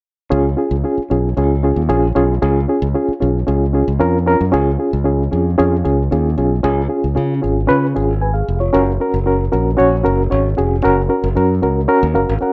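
A dark, warm studio sound with a moderate large-room reverb frames this joyful, uptempo 1960s-style soul excerpt at 114 BPM in Db mixolydian, where a reedy, clean electric piano with fast tremolo sits up front over a punchy, bright fingered electric bass, moving from Db to Gb at 8.7 seconds in the second section and ending with a short electric piano fill at 11.9 seconds.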